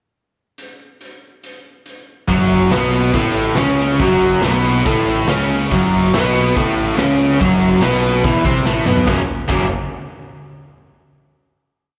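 A swaggering, rowdy garage rock piece opens at 0.6 seconds with a raw drum kit playing a pickup bar alone: a punchy kick, medium-tuned snare, hi-hat, toms and crash, all gritty and saturated in a bright, pumping stone room with a rolled-off top. At 2.3 seconds the main riff arrives on a dark, overdriven electric guitar, picked, double-tracked and pushed up front, playing an octave figure with spring reverb and slapback echo. A fuzz-laden picked electric bass enters with it, doubling the riff in driving eighth notes with a punchy, amped edge. A jingly tambourine sits close, dry and in the background, adding its own pattern under the big rock groove. A drum fill leads into a final chord at 9.1 seconds, and the whole piece sounds like a live club gig heard through the venue's PA.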